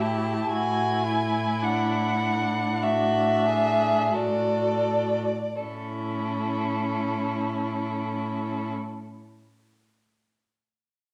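In a rubato 4/4 that drifts between 38 and 57 BPM and slows through the first 5.6 seconds, this lyrical, serene fragment of a slow romantic string quartet movement unfolds in A major. A single warm, smooth violin carries the melody up front, its vibrato even and its tone slightly distant, while a second violin, clear and focused, sings a supporting line just beneath it. A viola fills in the accompaniment with a rich, close tone and vibrato, and a cello, also up front, holds a low A in the bass with a focused sound and a smooth top. All four bowed instruments play together from the start until 8.7 seconds, moving from an A7 chord to D over an A bass before settling onto A at 5.6 seconds. A wet recital hall reverb surrounds the quartet, lending the cut from a longer piece a spacious, glowing halo.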